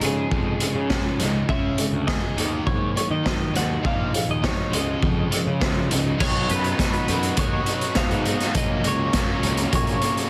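Upbeat and jangly, this indie rock passage features a bright, clean twelve-string electric guitar carrying the melody through lush chorus and tape echo. Beneath it sit two overdriven electric guitar riffs in the background, one of them biting and also bathed in chorus and echo, while a growly fuzz bass and an up-front, saturated garage drum kit with a punchy kick drive a straight 4/4 groove. At 6.2 seconds a ringing, bell-like glockenspiel and a very quiet, smooth bowed string section join as the harmony shifts to Badd9 and F#add9/A#.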